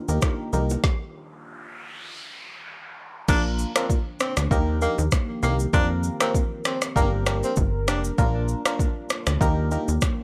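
A tenor saxophone, warm with vibrato, subtone and scooped notes, takes a jazz-style solo through tape echo from 3.3 seconds in this sunny, breezy afrobeats excerpt at 98 BPM in Bb major, riding over a deep house drum kit with a punchy kick and a woody snare, a funky, plucky sawtooth analog bass, a biting, percussive FM electric piano with chorus, and a deep, detuned ambient pad pumping in the background, while brief bongos and congas open the cut before a stop at 0.8 seconds filled by an electronic noise sweep, the whole track carrying a dry, gritty hardware sound.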